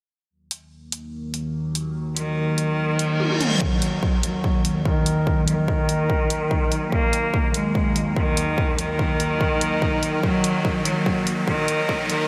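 A menacing, heavy half-time wobble dubstep fragment at 145 BPM in Eb minor opens with a dubstep kit of hi-hat and toms at 0.5 s, soon joined by an evolving, morphing wavetable pad holding sustained chords through chorus, phaser, sidechain pumping and a filter sweep. From 2.2 s, a bright, nasal cello with light vibrato carries the melody up front through a low-pass filter and analog delay. A reverse cymbal and drum fill lead into a build-up at 3.6 s, where a punchy, layered electronic kick enters, a riser runs, and filter sweeps move over pad and cello, all in a dreamy mix soaked in huge ambient reverb.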